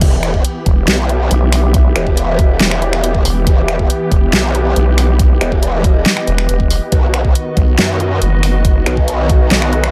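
A dry, up-front mix of heavy wobble dubstep, this excerpt comes straight from the drop of a longer track, moving at 139 BPM in a half-time 4/4 feel in E harmonic minor, with a chaotic, menacing mood. An overdriven, knocking electronic kick and a layered dubstep kit with a huge snare, hi-hat, finger snaps and crash cymbal drive the groove, both carrying small room ambience. Two saturated basses dominate the low end: a growling, detuned, aggressive bass with chorus and overdrive, and a nasal, resonant vowel-sweep wobble bass that joins at 0.7 seconds and drops out at 8.8 seconds. Above them, huge, airy supersaw chords sit under a low-pass filter and pump against the sidechain. In the background, a warbling, lo-fi tape-like pad enters at 0.6 seconds, its nostalgic tone shaded by phaser, chorus and its own reverb. The harmony holds on E minor before shifting to B at 6.9 seconds.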